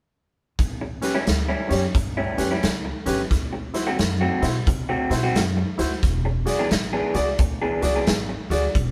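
Soulful and gritty, this short fragment of an electric blues shuffle swings at 88 BPM in A major, tuned slightly flat to A4 = 437 Hz. A raw garage drum kit sits up front, saturated with a punchy kick and a medium-tuned snare, while a woody, thumpy pizzicato upright bass on gut strings enters with it at 0.6 s. A dark, slightly broken-up electric guitar through a small old amp plays a fingered, lo-fi, compressed riff from 0.8 s, and a natural-sounding grand piano adds accompaniment from 1.0 s over A7, D7 and E7, all captured live in one moderate stone room.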